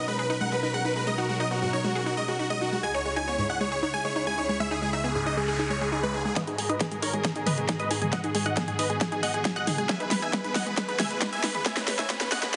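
A heavily compressed, radio-like sound with its top end trimmed away sits inside a huge ambient reverb in this excerpt of bittersweet, soaring uplifting trance at 136 BPM in G# minor. A huge, euphoric supersaw lead carries the melody up front from the start, bright and detuned, pumping against the sidechain through a low-pass filter and digital delay. Beneath it, a dark chamber string section holds soft-attacked, sul tasto chords with light vibrato. A lush, warbling unison pluck spins arpeggios through delay, while the harmony moves from Bmaj7 to C#m. A very quiet noise sweep and riser creeps in at 5.0 seconds. At 6.4 seconds a build-up begins over G#m7 and E: filter sweeps move across the lead, arpeggio and pluck, a second wave-folded pluck line with a moving notch drifts high in the background, and an overdriven big-room kit with a huge snare and a punchy layered kick drives a drum fill to the end.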